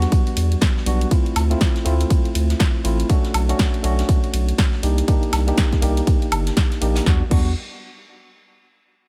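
Swung sixteenths at 121 BPM in 4/4 drive this smooth, late-night deep house cut in E minor, where a punchy, up-front electronic kick with studio reverb and a layered house kit of crash, hi-hat, ride, snare and woodblock sit over a very quiet brushed vintage kit, while a round, deep analog bass sits beneath worn, slightly out-of-tune tine electric piano stabs, lightly overdriven with digital delay, moving through Em9, Dm9, Bm9 and Cm9.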